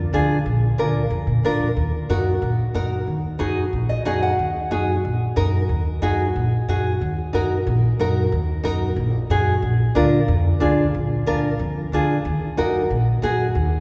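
This cumbia clip, cut from a longer piece, moves at a driving, danceable 183 BPM in a straight 4/4, set in E-flat harmonic minor. An upright bass plucked pizzicato on steel strings gives a woody, up-front foundation from the very start through 13.8 seconds. A fingerpicked nylon-string guitar sits just as close, its small, warm tone marked by audible finger squeak as it supplies the accompaniment, with a brief fill at 3.7 seconds. The harmony swings between Bb7 and Ebm across two passes of the same section. Everything is bathed in a long, wet church reverb, lending the up-front acoustic pair a cavernous hall around them.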